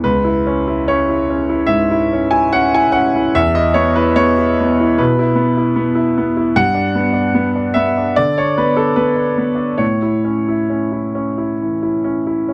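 The rhythm is loose and rubato, with uneven beats drifting around a slow 74 BPM in 4/4. This neoclassical minimalist piano piece carries a hopeful, peaceful mood across a short 12.5-second excerpt from a longer work. A single grand piano plays alone from start to finish, spanning C#2 to G#5 with a clear, smooth, vintage tone and long sustain that sits up front. The harmony moves from C#m7 to E5 at 3.4 seconds, then to Gmaj7 at 6.6 seconds and A at 9.8 seconds. The sound is dry and close, in the manner of a 1970s studio recording, with light reverb on the piano.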